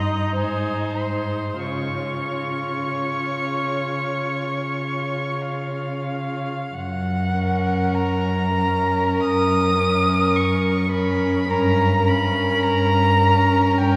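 A muted string quartet opens this slow, lyrical romantic movement at once, all four players sounding together from the first moment in Db major, with a rubato feel around 46-54 BPM in 4/4. The first violin carries the melody up front, high in its range, its con sordino tone dark and veiled, shaded with vibrato and portamento. Beneath it the second violin sings a smooth-topped inner line, and the viola fills out the accompaniment with light vibrato and a soft attack. The cello anchors the bass, close and present, its muted voice rich with vibrato. At 6.7 s the harmony shifts to F# major, and a diminished chord at 11.5 s adds a touch of tension before the passage breaks off, since it is cut from a longer work. A long, wet church reverb surrounds the quartet, giving the hushed strings a spacious, glowing halo.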